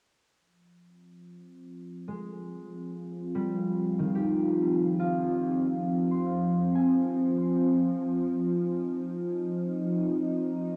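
Ambient and reflective at 71 BPM in 4/4 with a straight feel, this spacious passage in F minor, cut from a longer piece, moves from Fm to Ab at 7.2 s. An evolving, morphing wavetable pad enters at 1.7 s with mellow, detuned unison chords of triangle and sine tones, a slow attack and long release, colored by chorus, its own reverb and cassette tape character. From 2.1 s an up-front, thumb-plucked concert harp rings out warm, acoustic arpeggios through tape and analog delay, and the whole home cassette recording sits in a lush, wet hall reverb.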